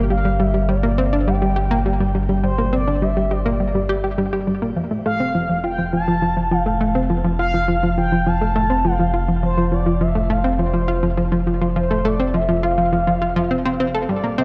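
An up-front, round sawtooth analog pluck riff with a sub octave, fast filter-pluck attack and short decay, colored by chorus, cassette tape, shimmer reverb and tape echo, opens this mysterious, hypnotic fragment of sequencer-driven ambient space music at 103 BPM in straight 4/4. A deep sine sub bass sustains beneath it, and from 0.1 seconds a smooth, nasal synth lead with vibrato and subtle chorus sings high above through its own shimmer reverb and tape echo, all moving from G minor to F at 4.8 seconds inside a long plate reverb and a dark, warm production.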